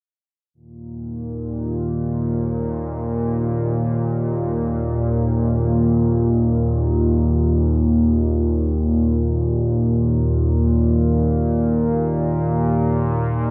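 Vast and ominous, this ambient piece drifts in free time, cut from a longer work. A lone analog drone carries everything, entering at 0.8 seconds and holding until 13.5 seconds in a low register from Eb2 to Bb2. Its warm, evolving tone blends sawtooth, pulse and sine waves with pulse-width modulation and a wave-folded edge, shaped by a slow attack, sustained body and long release. Chorus and tape echo thicken the drone, which sits up front in the mix. The harmony rests on an Eb5 chord from 0.5 seconds. A huge, wet reverb with a 7.9-second decay places the sound in a vast, echoing space, and the piece was captured on cassette tape.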